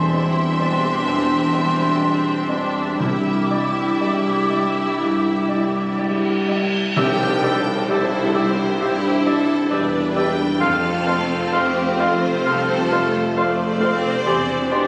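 Heard through a phone in the room, with club reverb and compression over a moderate scoring-stage ambience, this moving, hopeful cinematic film cue in C major drifts in a rubato 4/4 at around 59-67 BPM, cut from a longer piece. A clear, vibrato violin section carries the melody while a mellow clarinet, a lush second violin section, a pure flute group and, from 7.0 seconds, a distant solo oboe weave second lines against a background bed of open concert grand piano, smooth violas, dark soft-attack French horn chords, ringing fingerpicked harp arpeggios, a focused double bass section and a very quiet cello section. Starting at 3.0 seconds, a close, dry timpani and a cymbal swell with tam-tam add weight, and a full-band accent marks the shift at 7.0 seconds as the harmony moves between Cadd9 and F.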